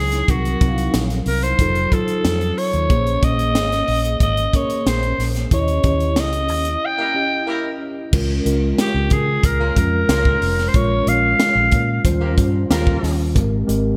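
Polished 1980s jazz-funk pop with a breezy, urban mood at 92 BPM, cut from a longer piece, where a growling, raspy alto saxophone carries the melody up front over a mellow tine electric piano treated with ensemble chorus, a round, foam-muted fingered electric bass and a crisp fusion drum kit with a high-tuned snare, tight kick and gated reverb. The band hits accents from 5.5 seconds into a break at 6.8 seconds, and a dark, distant horn section doubled in octaves adds a quieter second line from 7.0 seconds as the harmony moves through rich chords like Bbm9, Eb7b9 and Db6. The bright digital production keeps the sound glossy and lightly reverberant, with the saxophone dropping out at 12.1 seconds before the close on Abmaj9.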